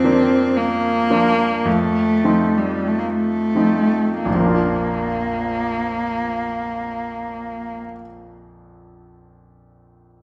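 Tender and serene, this fragment of a romantic classical duo unfolds with a free, rubato feel, slowing through its first 4.3 seconds. Up front, a single bowed cello sings the melody in a rich, expressive voice with vibrato, soft attacks and gliding portamento, while a bright, brilliant grand piano with short sustain accompanies beneath it. The cello falls silent at 7.8 seconds and the piano carries on alone to 10.2 seconds, all within the wet reverb of a recital hall.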